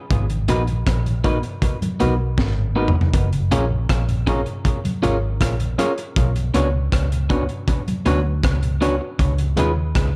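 A dark, softly reverberant production frames this romantic, tender lovers rock reggae excerpt, where a round, foam-muted fingered bass and a gritty, saturated breakbeat kit with a punchy kick and high-tuned snare sit up front, joined by very quiet, bright congas played with hard hands. A worn, slightly out-of-tune tine electric piano with light overdrive and tape echo, a soft, flute-like tonewheel organ with chorus vibrato and key click, and a picked, compressed guitar through a small, slightly broken-up old amp add stabs and chordal colour over a progression moving from G#m7 to F#maj7, Bmadd9 and C#7. A drum fill from 2.4 to 3.1 seconds marks the turn to the second chord.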